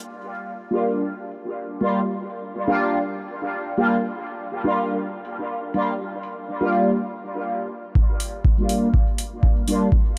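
A juicy, detuned sawtooth polysynth sits up front, playing resonant filter-swept stabs on a G minor seventh chord with chorus, phaser, sidechain pumping and dub echo. Behind it, overdriven metallic analog hi-hats, re-recorded in a small room and muffled by low-pass filtering, carry this nocturnal, hazy dub techno cut at 122 BPM in straight 4/4. After a break at 7.0 seconds, a deep, overdriven analog kick drum enters up front at 8.0 seconds, all within a dark production with light reverb.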